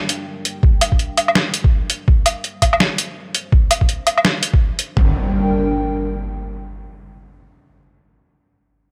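Half-time drum and bass at 166 BPM in G minor, this short cut from a longer piece feels heavy and spacious, with a swung half-time pulse resting on a G minor chord. A dark analog pad holds sustained chords from the start to 6.4 s, its detuned square, sawtooth and triangle layers, sub octave and ring modulation giving a moody, deep bed that breathes with sidechain pumping under a chorus sheen. A boom bap sampler-style drum kit sits up front, pitched down, compressed and gritty, with hi-hat, a medium-tuned snare and woodblock joined by a thumpy kick and toms, all carrying a tape-warm grain. At 5.0 s the drums fall away as a growling, buzzy 808-style bass lands on a low G with a fast attack and a decaying tail, while an electronic impact hits up front and rings out to the end. Light reverb and a digital ambience give the mix its open, shadowy space.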